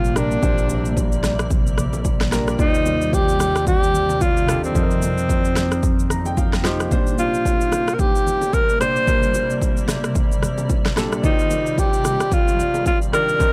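Amapiano with a relaxed, soulful swing, led by a breathy, whispered alto saxophone up front with analog delay, over a concert grand piano whose action noise and deep low end sound intimate, plus a cloudy, evolving granular pad in the background that pumps with sidechain and carries its own reverb. A punchy deep house kit of kick, fat snare, rim click and shaker drives the groove beside very quiet congas and bongos that enter at 0.4 seconds, while a dark, round fingered electric bass plays until 6.9 seconds, the moment a piano fill that began at 5.8 seconds ends. The recording is dry and gritty, cut from a longer piece.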